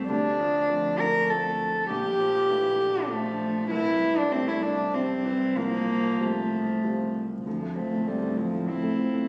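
In a rubato 3/4 at 99 BPM, this short melancholic, reflective fragment of neoclassical piano and strings sits in D minor, cut from a longer piece. An upright piano with a woody, intimate tone and audible action noise plays accompaniment from the opening, its notes short in sustain. Beneath it, a bowed double bass played sul tasto anchors the low end with an airy bow and light vibrato, while a dark, floating viola sits in the background. Up front, a warm cello enters at 0.1 s to carry the second line, soft in attack and smooth at the top. The harmony moves through Dm7, Bbmaj7, C and Fadd9/C before returning to Dm7 at 7.5 s as a new section begins. The whole is heard through a wet recital hall reverb, captured on a phone in the room with club reverb and compression.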